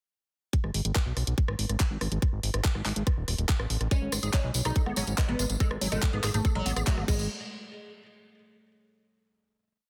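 An overdriven four-on-the-floor electronic kick opens this intense psychedelic trance piece at 0.5 seconds, joined by programmed garage drums with rim clicks, handclaps, hi-hats and crash, and a fat, detuned sawtooth analog bass rolling in sixteenths up front. At 3.9 seconds a plectrum-plucked fretless oud enters with a repeating riff melody, colored by phaser, 12-bit sampler grit, sidechain pumping and digital delay, alongside a woody, warbling wave-folded pluck playing an accented acid line through chorus and delay, and a jingly tambourine in the background. A band accent lands at 6.9 seconds before a final hit closes the piece, set in a digital ambience with a dense, heavily limited modern master.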